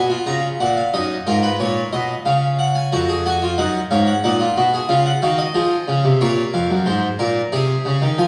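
Heard up front in a reverberant recital hall, a close-miked French-style harpsichord rings out plucked and brilliant, its three sets of strings giving a full body across a range from E#2 to A#5. This contemplative, solemn fragment of a baroque-style three-part fugue moves at 91 BPM in a straight 4/4 in F# major. Over its 8.3 seconds the harmony passes from F# through C# and A#m before ending on G#/B#.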